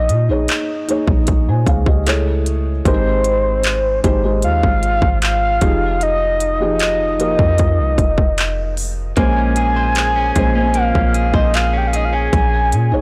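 A round, full synth lead carries the melody up front, layered with a sub octave and thickened with chorus, delay and vibrato, over a deep, boomy 808-style bass and an electronic trap kit with a hard-clipped kick, crisp hats and handclaps. The piece is a moody, sensual contemporary R&B excerpt at 76 BPM in F minor. A felt-muted upright piano adds dark, intimate accompaniment with audible action noise, and a clean, compressed electric guitar picks arpeggios from 9.2 seconds, all within a dry, blown-out and overdriven mix.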